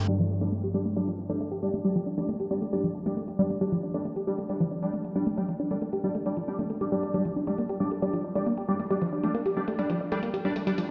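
A tight, detuned sawtooth synth riff with a plucky filter opens this excerpt of driving, hypnotic peak-time techno at 136 BPM, its sound coloured by chorus, phaser, tube saturation and dub echo and swept by a filter throughout, over a steady G5 harmony. Thick, aggressive unison rave stabs sit up front beside it, carrying a moving notch, chorus, built-in reverb and tape echo, while a layered electronic drum kit with tape-softened hats and crash cymbal stays far in the background behind low-pass filtering. The whole industrial mix plays as if blasted through a big sound system in a bare stone room, drenched in a huge 8.2-second ambient reverb and dulled by a low-pass filter.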